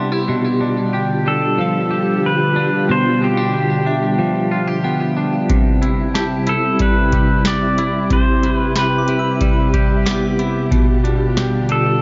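Ethereal and dreamy, this 92 BPM dream pop piece in C major opens with a silky, warbling string machine holding chorused chords and a twangy electric guitar picking up-front arpeggios through tape echo, while a pure FM synth bell glimmers in the background with chorus and phaser; a bright pedal steel guitar enters at 1.3 seconds with a slide melody and volume swells, and a booming analog drum machine with a deep kick, crisp snare and metallic hats arrives at 5.5 seconds, all set in a moderate echo chamber with a dark, echo-heavy mix and faint mains hum.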